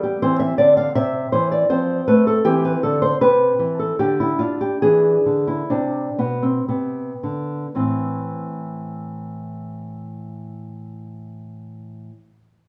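Grave and flowing, this short excerpt cut from a longer classical baroque-style dance in 3/4 and A minor features a solo nylon-string guitar, dark, small and up front with fresh strings and a thumb-plucked touch, moving rubato between 54 and 81 BPM, slowing from 1.3 to 7.8 seconds before settling on A minor at 7.8 seconds, all set in a moderate recital hall reverb.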